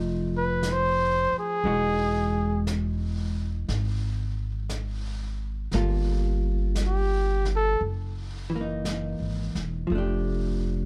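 The recording has a dark, lightly reverberant production with a late-night intimacy. It is a tender jazz ballad at 59 BPM in 4/4, with a gentle swing on the eighth notes, tuned to A4 = 438 Hz and cut from a longer piece. The trumpet carries the melody as a close-miked solo from 0.4 to 7.8 seconds, sitting up front with a warm, vibrato-laden tone and a plate reverb. Beneath it, a clean, compressed hollow-body electric guitar picks out the accompaniment, while a woody pizzicato upright bass sits forward in the mix. A vintage brush kit enters at 0.6 seconds, its brushed snare and hi-hat soft and natural in the studio room. The harmony moves from F7 through Emaj9, Gm9 and F#13 before resting on F69.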